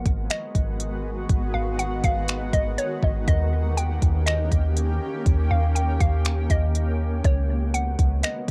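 A smooth, tape-soaked R&B kit of soft kick, finger snaps and hi-hat sits up front from 0.1 s, alongside a deep, round 808-style bass that sounds from the very start of this melancholic, hazy cloud-rap excerpt with a half-time feel. Beneath them, a shimmering, ethereal pad holds granular, wave-folded chords through G#m7, D#7 and C#7sus4, pumping against the beat with chorus, reverb and cassette grain. On top, a hollow, bouncy square-wave pluck carries the melody, its detuned, mellow tone softened by chorus, a low-pass filter and analog delay, all within a lightly reverberant home-cassette sound.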